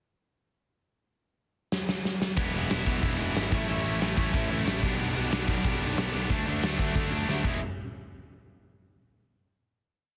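A drum fill on a big-room rock kit opens this short, rowdy punk rock piece at 1.7 seconds, its tight kick and medium-tuned snare sitting up front. At 2.4 seconds two picked electric guitars crash in with driving eighth-note chords, one overdriven and one bright and distorted, over a growly fuzz bass, moving through E, A, G/B and D before landing back on E. A last drum fill sets up a final hit at 7.6 seconds, all in a dense, heavily limited mix with light reverb.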